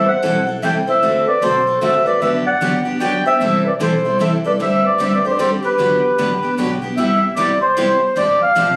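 A swinging, lively snippet of acoustic string swing in waltz time, led by an up-front, reedy accordion melody, with a raspy, growling clarinet second line that drops out at 6.5 seconds, two bright, jumbo-bodied picked steel-string guitars (one with audible finger squeak) providing accompaniment, and a woody, thumpy upright bass in the background, all captured on a phone in the room with moderate reverb.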